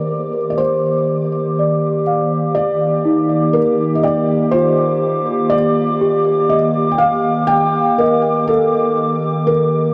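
Drenched in huge reverb, this serene, weightless ambient fragment sits in a vast, echoing space, moving at 61 BPM in Eb lydian, tuned to A4 = 444 Hz and resting on a single Eb69 chord. Up front, a felt-muted upright piano carries a soft, intimate melody through delay, while a warbly, nostalgic, lo-fi tape-like pad holds sustained chords with chorus and a slow attack. At 1.6 s a bell-like, delicate celesta joins with sweet arpeggios, also set in delay.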